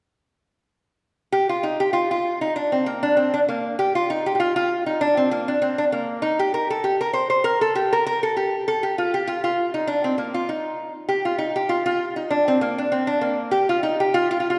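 A wet, spacious reverb with a two-second tail surrounds this short cut from a longer Celtic folk piece, recorded in a church or concert hall. A lap resonator guitar plays alone and up front, entering at 1.3 seconds and carrying the tune through to 14.6 seconds. Its tone is metallic and nasal yet mellow, with the glide of a slide and the attack of fingerpicks, moving between Bb3 and C5. The tempo is a brisk 197 BPM in 4/4 with a light swing on the eighth notes, giving the music a wild, dark and lively character. The passage states one section and then begins it again at 11.1 seconds before the cut ends.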